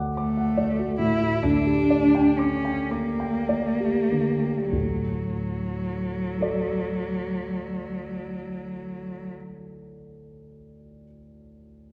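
Serene and tender, this short passage from a longer romantic work for cello and grand piano unfolds in a slow, flexible 6/8 in D major, its pulse hovering around 30 to 51 beats per minute and easing back through the opening 4.7 seconds. The cello carries the melody from 0.2 to 9.3 seconds in a rich, bowed voice, one player sitting up front with expressive vibrato and gliding portamento across a compact middle range. Beneath it, a dark concert grand piano supplies mellow, smooth accompaniment with deep bass and a vintage character, sounding from the very start and lingering until 11.9 seconds. The harmony moves from D to a shaded G minor over a D bass, then settles back on D as the second section begins. A lush recital hall reverb places the listener further back in the room, giving the duo a soft, spacious glow.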